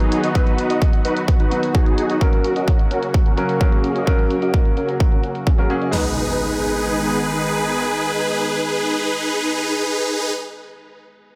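Euphoric and powerful, this short cut of festival progressive house runs at 129 BPM in 4/4 with a straight feel, centred on G# minor and moving from B to F# before landing on G# minor. Huge, bright supersaw chords carry the riff up front, shaped by a phaser, tape echo, sidechain pumping and a filter sweep through the opening stretch. Beneath them, a lush, thick unison pad holds sustained chords with chorus and a slow attack, while a clear grand piano adds present accompaniment with tape echo and its own pumping. A big-room dance drum kit enters at 0.4 seconds with a punchy kick, a massive snare, crash cymbal and toms in a small room, layered with a filtered electronic hi-hat. The kit drops out near 6 seconds as an electronic impact hits at 5.9 seconds, and the synths sustain until about 10.3 seconds, with the piano carrying on to about 11.4 seconds, all under light digital reverb.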